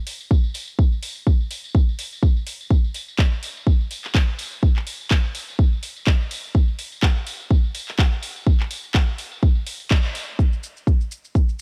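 House groove with a funky, sensual swing, cut from a longer piece and built entirely from percussion. A punchy, up-front electronic kick anchors the loop, while a layered house kit of handclaps, metallic hats and shaker pumps against it with a cassette-tape grit, and a small-room acoustic tambourine sits further back, pumping and filtered dark. The whole band hits an accent at 9.9 seconds before a brief new section begins at 10.4 seconds, all within a lo-fi home-recorded digital ambience.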